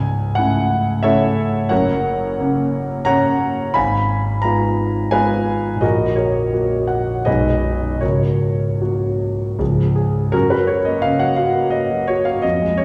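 Set in a lush recital hall reverb heard from further back in the room, this brief, hopeful excerpt from a longer romantic character piece features a solo concert grand with a natural, intimate tone, deep bass and audible action noise, moving in a rubato triple metre through a shifting chord progression before a new section arrives at 10.3 seconds.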